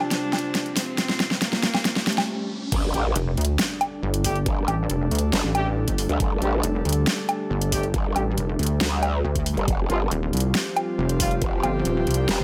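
A pulsing, saturated pluck wobble bass drives this aggressive, heavy wobble dubstep excerpt at 138 BPM in half-time. It enters at 3.2 s, just after a bright, growling, formant-filtered growl bass and an overdriven, knocking electronic kick arrive with the drop at 2.7 s. A huge-snared dubstep drum kit plays from the start. Before the drop, a build-up has a distant, sul tasto cello melody floating over the kit's drum fill and a very quiet riser and swell, whose impact lands at the drop. Throughout, an evolving, morphing wavetable pad and an airy, breathy pad, both pumping under sidechain, sit in the background, later joined by mellow brass ensemble stabs with digital delay.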